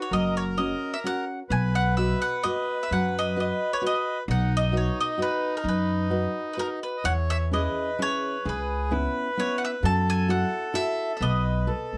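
A round, double-strung mandolin melody opens this romantic, sunny Italian folk serenade in 3/4 at 130 BPM, with a lightly swung, rubato feel, sitting up front over a reedy accordion second line, full-bodied fingerpicked nylon-string guitar with audible finger squeaks, and a woody, thumpy pizzicato upright bass on gut strings, all in a small room as the music moves from B major to E major at 7.0 s before this brief cut from a longer piece ends.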